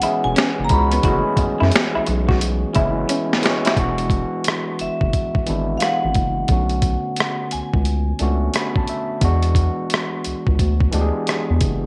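A swung, late-night neo-soul R&B groove rides on a compressed, gritty boom bap sampler-style kit with thumpy kick, high-tuned snare, finger snaps, hi-hat and rim click, with a fill at 3.1 seconds, while a deep, round analog bass enters at 0.3 seconds under a barky, overdriven tine electric piano, a lo-fi, slightly broken-up guitar second line that plays only until 3.7 seconds, and a metallic, airy vibraphone melody with slapback echo, all set in a sultry spring-reverb ambience in this excerpt from a longer piece.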